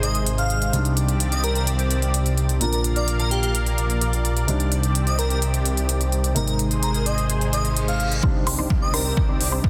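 The sound is dense and heavily limited, dry and modern, with a thick, saturated detuned saw bass and, once it arrives, a punchy overdriven kick sitting up front. This is a euphoric, anthemic festival progressive house passage in C minor at 128 BPM, cut from a longer piece and moving through Ab, Cmadd9 and Bb. From the start, an airy, dreamy lead carries the melody with chorus, vibrato and dub echo. Beneath it, a soft, felt-muted upright piano plays an intimate accompaniment that pumps with the sidechain, and a lush, bright unison pad holds sustained chords with a slow attack and long release. Crisp, overdriven electronic hi-hats, re-recorded in a large room and high-pass filtered, tick through until about 9.5 seconds. A reverse cymbal sounds at 7.7 seconds, leading into a build-up at 8.2 seconds. There the kick enters alongside a decaying unison pluck arpeggio up high and a background supersaw stab riff under a low-pass filter sweep.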